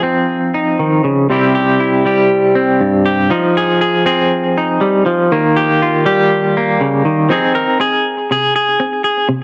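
A straight, even four-beat pulse drives this short, danceable highlife fragment, cut from a longer piece. A lone semi-hollow electric guitar carries the whole recording from 0.0 to 9.4 seconds, bright and clean in its picked tone and placed up front. Tremolo, analog delay and a cassette-tape coloring shape its sound, and a moderate studio reverb adds some room around it. The harmony moves from F7 through C, Fm7 and Ebadd9 before settling on Fm7 as a new section begins at 7.3 seconds. The home cassette recording lends the fragment a warm character.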